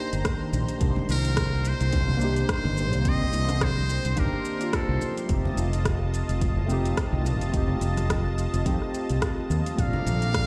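Warm and relaxed, this excerpt of sunset chillout in C dorian sways at 107 BPM with a light 16th-note swing, as a buzzy, breathy trumpet with metal mute and light vibrato sings a jazz-style melody through digital delay from the start to 5.2 seconds before returning at 9.8 seconds. Round, wave-folded electric-piano-like synth keys with chorus and delay sit beside a lush, detuned unison pad, while an up-front fretless electric bass with ensemble chorus anchors the Cm7, F7 and Bbmaj7 changes. A tape-warm deep house kit of metallic hi-hats, rim click and shaker rides alongside a deep electronic kick, with very quiet, distant congas in the background, all heard through a big sound system in a bare stone room.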